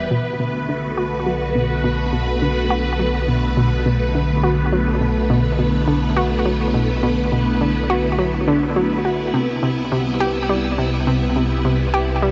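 Drenched in a huge, long-tailed reverb with a softened top, this cosmic, mysterious piece of sequencer-driven ambient space music sets a swirling, warbling vintage string machine up front, with ensemble chorus and phaser on its sustained chords, over a deep, round sine sub bass, while a nasal, wave-folded analog pluck with chorus and delay plays a bright riff from 0.1 seconds as the harmony moves from Bm7 to Cmaj7 at 9.3 seconds in this section cut from a longer piece.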